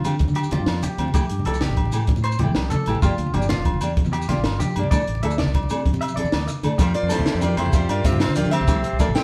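Highlife guitar band music with a carefree, sunny mood, moving at 128 BPM in a straight 12/8 feel in F major, cut from a longer piece. From the start, a bright, full-bodied nylon-string guitar plays fingerpicked accompaniment while a twangy, compressed clean electric guitar adds arpeggios above it. A compact cocktail drum kit with a punchy kick, high-tuned snare, hi-hat and a dark, rolled-off top drives the groove alongside ringing, close agogo bells, grainy maracas in the background, thick-skinned congas played with hard hands, and a round, direct fingered electric bass. After a drum fill from 6.0 to 6.8 seconds, the chords cycle back to Fsus2, and a picked steel-string acoustic guitar takes the melody with audible finger squeak. At the same moment a bright, punchy alto saxophone with light vibrato plays a second line, and a clear tonewheel organ holds sustained chords in the background with key click, chorus vibrato and a slow rotary speaker. 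The band sounds as if playing live in one stone room with a moderate reverb of about 1.0 second.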